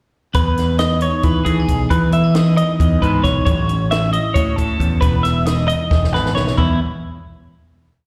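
Wistful and playful, this short math rock and midwest emo piece moves at 269 BPM in a straight 7/8 in E major, cycling through Emaj7 and A6 chords. Up front, a warm, clean twelve-string electric guitar plays a compressed ostinato with slapback echo, while a second twangy twelve-string rolls fingerstyle arpeggios in the background with vibrato and slapback echo. A growling, overdriven picked bass sits locked to the tight kick of a dry cocktail drum kit with a high-tuned snare; a drum fill at 5.9 seconds leads into the final chord, all heard as a live gig through the venue's PA with recital hall reverb.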